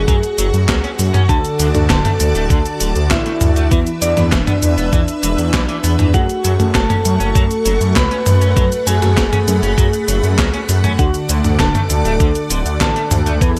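A thick, detuned sawtooth bass sits up front and pumps against a thumpy electronic kick in this nocturnal, driving synthwave excerpt, while a bright vintage string machine holds lush sustained chords that pump along with it. A smooth, expressive synth lead carries the melody with vibrato and chorus, joined by a soft, warbling FM bell playing a second line above it, and a slightly broken-up, twangy electric guitar picks a riff through lush chorus and tape echo. A clean 12-bit drum machine adds snare, hi-hat, handclaps, cabasa and toms with gated reverb, and from 1.3 s a dreamy, dark FM electric piano with a soft pad layer adds tremolo-laced stabs in the background.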